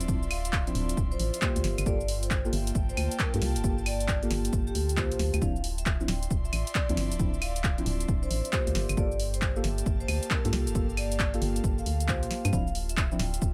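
A dry, close-sounding mix with little reverb carries this bouncy, soulful slice of two-step UK garage, cut from a longer piece and moving at 135 BPM in 4/4 with a swung 16th-note feel. A punchy, tape-warm electronic kick and an analog drum machine drive the groove, the machine supplying claves, handclaps, hi-hat, shaker and a punchy snare, with a short room on the snare, clap and hats. Underneath, a hollow, organ-like FM bass with a fast attack and dark decay pumps against the kick, while deep, mellow chord stabs, soft and dusky with chorus, phaser, delay and a moving filter sweep, trace a Dm9 to Gm9 progression. An airy, breathy pad with a slow attack and long release hovers behind everything, its detuned layers chorused and pumping gently. From 0.3 seconds, a metallic, ringing vibraphone struck with hard mallets sits in the background in a boxy small room, its melody echoed by digital delay.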